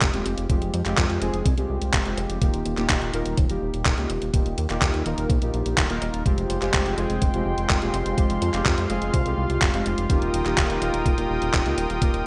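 Italo disco in F minor at 125 BPM, this short cut from a longer piece strikes a melodramatic, bittersweet mood over a straight 4/4 groove. A thumpy electronic kick drum sits highest in the mix, joined by an up-front, clean 12-bit drum machine supplying handclaps and hi-hat with gated reverb. A glossy, chorused synth bass with a filter pluck and detuned pulse and sawtooth tones anchors the low end, while bold, fat analog synth brass stabs carry vibrato, a filter sweep, delay and a touch of vintage 12-bit sampler grit. At 6.3 seconds a smooth, warbling analog pad enters with slow-attack sustained chords. The harmony moves between Fmadd9 and Ebadd9, and the bright 1980s-style digital production is bathed in a lush hall reverb.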